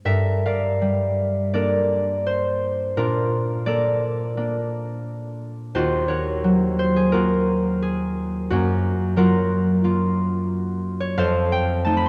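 Classical solo harp in 4/4, gentle and mysterious, drifts with rubato between 72 and 91 BPM as a ringing, fingerpicked concert harp sits up front across a span from Eb2 to C6, moving through Gm9, Bbmaj7, Ebm9, F#maj7 and F9 in a dark production bathed in a long, wet cathedral reverb over this 12.1-second excerpt cut from a longer piece.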